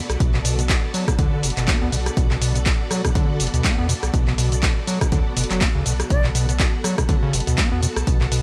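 Raw and gritty, this acid house excerpt moves at 122 BPM in B minor with a 16th-note swing, resting on a single Bm7 chord while an overdriven acid bass riff, squelchy and resonant with tube saturation and tape echo, runs under a filter sweep from start to finish. An up-front punchy kick, an analog drum machine with cabasa, handclaps, hi-hat and rim click, and a deep, round sub bass pumped by the sidechain support lush, vintage string-machine chords, themselves thickened by ensemble chorus and pumping. At 6.1 seconds an airy concert flute touches a single D5 with tape echo in the background, all in a dry sound.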